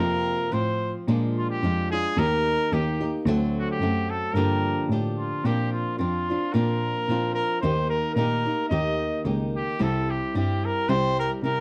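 Trumpet, flamenco guitar and cello all start together at the outset of this festive, proud mariachi passage in a straight two-beat metre, cut from a longer piece. The trumpet carries the melody up front as a bright, classical-style solo, its roomy, distant tone trailed by a slapback echo. Fingerpicked acoustic guitar sits alongside it with fresh strings and a flamenco character, picking out a harmonic path that runs through Fsus4, Bb7, Eb and D7 before settling on Gm7. Beneath them a single bowed cello supplies the bass, dark and woody with vibrato, heard from a distance. At 5.5 s the harmony turns to a sunnier major colour, moving from Bbadd9 through Eb to C, and the three parts play on together until the cut at 11.6 s. The sound is that of a dry, close 1970s-style studio with a light touch of reverb.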